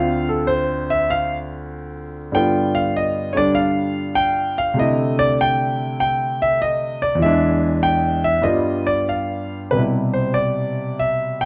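Warm and swinging, this solo jazz fragment at 98 BPM in 4/4 features a clear concert grand piano, up front with a deep bass, playing with swung eighths and rubato from D2 to G5 through Dm7, G7, C69, E7 and G7 before settling onto Cmaj7 in a new passage at 9.7 seconds, all set in a moderate large-studio reverb and tuned to A4 = 438 Hz.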